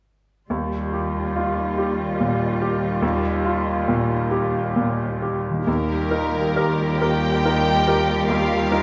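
A bright, brilliant concert grand piano sits up front in this cinematic passage in Eb major, its deep bass anchoring an Ebadd9 harmony from 0.5 seconds. The feel is moving and hopeful, moving in a slow 6/8 at 46 BPM counted in dotted quarters, with uneven, rubato timing. A distant viola section and a smooth, even cello section holding a low Eb add a bowed, vibrato-rich bed beneath the piano. At 5.5 seconds a very quiet, thumb-plucked concert harp joins with ringing arpeggios, and at 5.7 seconds the violins enter with the melody in a lush, focused upper register while a second, close violin line moves just beneath. A wet scoring-stage reverb and a faint mains hum surround the ensemble in this fragment cut from a longer piece.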